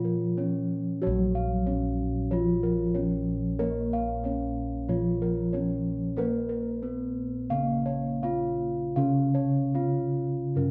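Stately and shimmering, this Javanese gamelan excerpt moves at a measured 71-93 BPM in a straight 4/4, set in Bb pelog and cut from a longer piece. A bronze metallophone carries the melody with a mellow, ringing tone from padded disc mallets, its sound soft and slightly vintage, while a second bronze metallophone plays accompaniment lower down, darker and smoother, its paired tuning producing shimmering beats. Bossed gongs spin arpeggios in a higher register, round and beating with a boxy, small-room closeness that sits up front. Another set of bossed gongs anchors the bass across a broad span from Bb1 to Bb4, their tone mid-forward. All four parts sound together from the opening through 10.7 seconds, with a brief first passage giving way at 1.0 seconds to a longer second one, the whole ensemble framed by a moderate recital-hall reverb.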